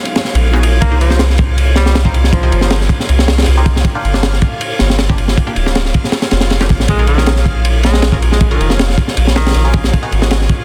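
A warm, jazz-style tenor saxophone stands out in this raw, frenetic drum and bass excerpt at 158 BPM in C minor, its low solo lines carrying vibrato and scooped notes under a dub echo, first from 0.8 to 2.9 seconds and again from 6.9 to 9.6 seconds. Beneath it, a crunchy breakbeat kit sits up front with a punchy kick, high-tuned snare and dark ride cymbal, its saturated, gritty character softened by a rolled-off top and a small-room feel. A soft, round sub bass holds the low end with deep sustained notes. Further back, a muted, detuned chord stab flickers through phaser and dub echo, while a reversed, granular texture adds a dreamy shimmer bathed in its own reverb. A very quiet, breathy pad sounds alongside the stab and texture at the opening for a brief moment before the drop arrives at 0.8 seconds, and the chords move from Abm7 through Cm7, Gm7 and Bbm7 in a dense, heavily limited, dry mix.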